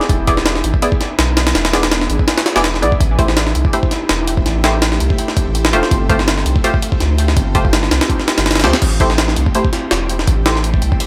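A compressed, pitched-up jungle drum kit sits up front with a thumpy kick, a high-tuned snare, hi-hat and crash, all gritty and sampler-style and re-recorded in a large room. It drives this raw, frenetic drum and bass excerpt at 165 BPM in A minor, with a light swing on the 16ths. Beneath it, a deep, round sub bass and muted, filtered chord stabs with lush chorus and dub echo move through E7, Am7 and G9sus4. Behind them, an ethereal, airy pad of detuned sawtooths carries phaser, ensemble chorus, reverb and vintage 12-bit grit.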